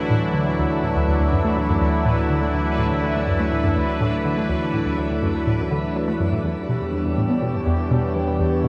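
Drenched in a wet shimmer reverb with a long tail, this short slice of ambient, sequencer-driven space music moves at 123 BPM in a straight 4/4 with a mysterious, expansive mood, shifting from Dadd9 to Em7 at 6.4 seconds. A bright, up-front sweeping resonant pad holds sustained chords over a vintage, warbling analog drone bass with pulse-width modulation, while a bubbling stepped-filter texture with random filter steps drifts through its own built-in reverb. Entering at 0.1 seconds, a round, detuned analog pluck plays a riff with a fast attack, colored by cassette tape and delay, and a filter sweep runs over it through the first 6.4 seconds.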